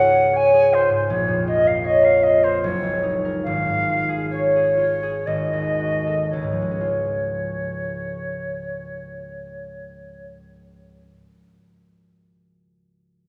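In a rubato 3/4 that slows over the first 6.3 seconds and moves between 55 and 83 BPM, this tender, lyrical romantic classical excerpt in Db major pairs a pure, crisp-attacked silver concert flute, singing an expressive melody with vibrato until 10.2 seconds, with a warm, ringing, fingerpicked concert harp accompaniment that carries on to 11.2 seconds, all set in a wet concert hall heard from further back in the room.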